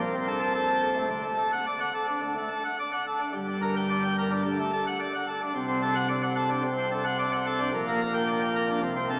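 A full, brilliant pipe organ plenum with mixtures, baroque voicing and audible chiff sits up front, spanning G1 to A5 through a majestic, stormy 9.2-second passage of a classical organ toccata at 109 BPM in straight 4/4, tuned to A4 = 436 Hz, moving through chords from Am/C and D to Gm, D7/C and Gm/Bb, all bathed in a 5.1-second cathedral reverb, with the recording itself carrying a small-speaker sound.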